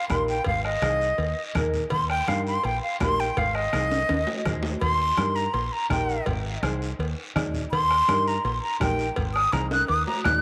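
A straight cumbia groove in 4/4 drives this sunny, festive snippet from a longer Latin piece, anchored by a soft-beatered, vintage-sounding bombo in the background and very quiet, low-tuned congas with a thick-skinned, hard-handed live-room sound. Ringing metal-shell cowbell and timbales join them, while a raspy, band-limited guiro adds texture, and a drum fill breaks the pattern at 3.9 seconds and again at 9.7 seconds. A punchy, foam-muted fingered electric bass with a direct tone and a full-bodied, thumb-plucked nylon-string guitar, finger squeaks audible, carry the accompaniment over a simple back-and-forth between Ab and Eb. Up front throughout, a bright silver concert flute plays an airy, expressive solo with soft attacks and vibrato, trailed by tape echo. A wet spring reverb gives the recording a lingering, spacious glow.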